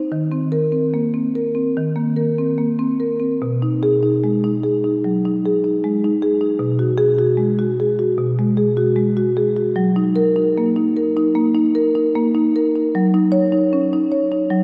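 A solo marimba played with medium mallets, its padauk bars sounding woody, dark and smooth up front, carries this playful contemporary classical excerpt at a rubato 75 BPM in 4/4, moving through chords such as Abm7/Cb and F#6 within a wet church reverb that rings for 3.6 seconds.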